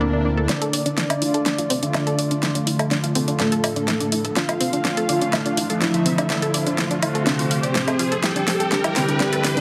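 Melodic techno excerpt with a dark, cinematic mood: a thick, nasal unison lead carries the melody over an airy, dreamy second lead, a very quiet, moody pad, detuned analog pluck arpeggios and fat, brassy synth stabs with 12-bit sampler grit, while a round analog bass sounds only until 0.5 seconds, when an overdriven deep house kit with a fat snare takes over up front, and background swells and risers push a filter-swept build-up through a moderate, huge ambient reverb and a compressed radio sound.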